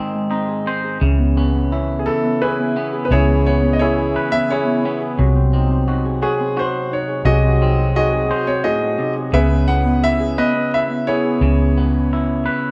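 An acoustic folk-pop ballad in C# minor at 86 BPM in a straight 3/4, cut from a longer piece, with a heartbroken, reflective mood, where an up-front, twangy, slightly broken-up electric guitar through a small old amp and a ringing, thumb-plucked Celtic harp playing arpeggios open together over a G# chord. A round, punchy, foam-muted vintage electric bass enters at 1.0 s on C#m7, and at 2.0 s a concert grand piano takes the melody with a smooth, long-sustaining tone. The harmony moves through G#7/B# and back to C#m7 under light reverb.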